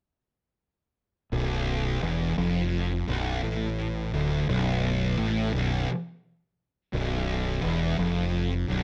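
Metal excerpt in B minor at 86 BPM, ominous and sludgy, where a thick, double-tracked fuzz guitar picks a low riff up front while a growling, bright, overdriven fingered electric bass sits beneath it, both playing together from 1.3 to 8.8 seconds in a dry sound with little reverb.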